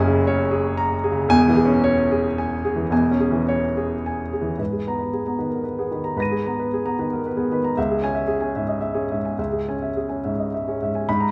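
Neoclassical minimalist piano in a melancholic, wistful mood, this short excerpt from a longer piece moves in 3/4 at roughly 105-117 BPM with a loose, rubato feel. A baby grand piano plays solo throughout, spanning a broad register from E1 up to D#7, and its tone comes across as clear, natural and up front. The harmony opens on F#add9 and settles onto C#m/E before a second section begins at 4.6 seconds on G#madd9, returning to C#m at 7.8 seconds. A moderate concert hall reverb with a 2.0-second decay surrounds the instrument with a sense of space. The tuning sits slightly low, at A4 = 438 Hz.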